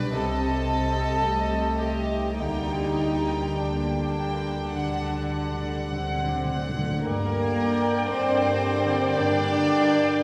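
Bowed strings open this slow, melancholic classical excerpt in G minor, a romantic orchestral movement moving with rubato at roughly 48-59 BPM. A chamber violin section carries the intimate melody with vibrato and a soft sul tasto touch, shadowed by a floating symphonic violin second line, while a woody viola section, a distant cello section and a shadowy double bass section fill out the lower strings. Mellow French horns hold sustained chords and a ringing concert harp plays arpeggios in the background as the harmony moves from Cm through Gm/D to D. Very quiet timpani with medium mallets enter at 2.4 seconds, adding a fill before stopping at 7.0 seconds. At that moment a very quiet dark clarinet and bassoon join along with a clear, tight trombone section holding chords, and at 7.1 seconds the music settles on Gm as an airy, hollow small flute group and a cor anglais come in. The whole sits in a wet, elegiac scoring-stage reverb that lends the ensemble a spacious hall sound.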